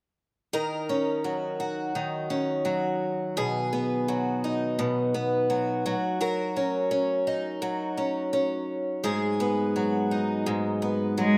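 Recorded outdoors with a light reverb, this sunny, easy-going acoustic pop excerpt moves at 85 BPM in 4/4 with a gentle swing on the sixteenths. From 0.5 seconds, an up-front, shimmering, octave-doubled twelve-string acoustic guitar picks an accompaniment through D#m7, B6, F#6 and G#m7, its sound touched by a slapback echo. At 11.2 seconds, a clear, bowed cello enters with a smooth vibrato on a single G#3 before the passage cuts off at 11.4 seconds.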